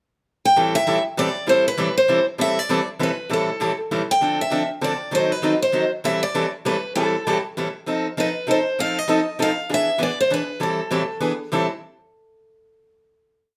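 A picked steel-string acoustic guitar carries the motif-based melody, sung-sounding phrases in a concert guitar's bright, fresh-stringed voice with audible finger squeak, entering at 0.5 seconds during a brief pickup bar. Beneath it, a boxy parlour guitar picks rhythm on every beat, short and accented on two and three, moving through Am7, Dm7, F7 and E7 before settling on a final Am7 at 11.5 seconds. This bittersweet, swinging jazz waltz in A minor runs at a brisk 197 BPM in 3/4, with both guitars up front in a wet studio reverb.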